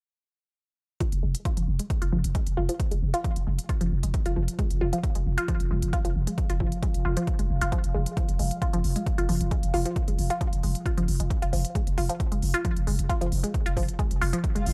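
A dry, gritty hardware recording of dark, hypnotic peak-time techno in F minor at 134 BPM, cut from a longer piece: a punchy, up-front kick and smooth electronic hi-hats with small-room ambience drive a straight 4/4 beneath a growling, buzzy 808-style bass on F1, overdriven, low-pass filtered and pumping with sidechain. Up front, a lush, detuned sawtooth unison pluck riff with a noise layer and ring modulation carries phaser and tape echo while a filter sweep runs across the synth arpeggio. From 3.2 seconds a slow-attack analog drone with pulse-width modulation and chorus evolves in the background, and a brief electronic swell arrives at 14.6 seconds.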